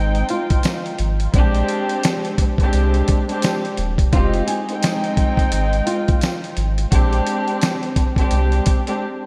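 Boom-bap hip-hop at 86 BPM with a swung 16th feel, gritty and dark, cut from a longer piece and bathed in a lush hall reverb that gives the mix a dreamy haze. A thumpy, compressed sampler-style drum kit and a deep, round sine sub bass sit up front beneath a close, intimate chamber string section bowed sul tasto with light vibrato and a cassette-tape tint, moving through Fm9 and Bb13 chords. A fingerpicked flamenco guitar drifts in the background with analog chorus and diffuse ambient delay until 6.4 s, a very quiet jingly tambourine adds vintage sparkle, and the track hits a break at 9.0 s.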